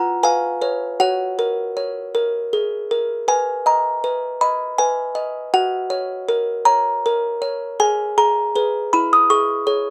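Closely miked and detailed, with a light reverb, this short classical lullaby is cut from a longer piece and feels innocent and dreamy in 6/8. A solo music box carries everything, its small-box tone bright, tinkling and slightly out of tune, sitting up front and ranging from E4 to D#6. A brief opening phrase gives way at 3.3 seconds to a longer second phrase that settles on B before drifting through F#, G#m and C#m/E.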